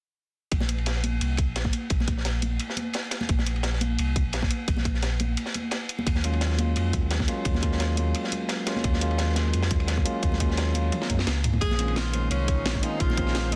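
A deep, up-front sub bass with octave rolls in alongside a tight electronic kick, a gritty, dark breakbeat kit with ride and high-tuned snare, a garage kit with cracking snare, bright hats and toms, and saturated congas, setting a soulful, rolling liquid drum and bass groove at 173 BPM in Bb minor with a light swing. A bell-like, clean tine electric piano carrying dub echo enters at 6.2 seconds, just after the harmony moves from Bbsus2 to Ebm11. A drum fill at 10.9 seconds leads into a warm tenor saxophone solo with light vibrato and dub echo at 11.6 seconds, and a very quiet, shimmering, ethereal pad arrives in the final moment of this dense, heavily limited cut.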